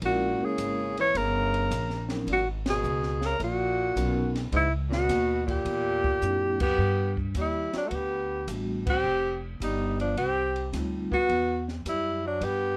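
Small-group swing and bop jazz with a sophisticated, warm mood, heard in a short cut from a longer piece. A clear, breathy alto saxophone with light vibrato and subtone carries the melody up front, while a breathy tenor saxophone with scooped notes and a smooth top plays a second line, over mellow, ringing vibraphone with soft mallets and motor vibrato until 11.1 seconds and a woody pizzicato upright bass. A compact cocktail drum kit with a dark, rolled-off top, high-tuned snare and punchy kick plays a fill into the second section at 6.8 seconds, and the band hits accents at 2.6, 6.5 and 8.8 seconds, all in light reverb and close, detailed sound.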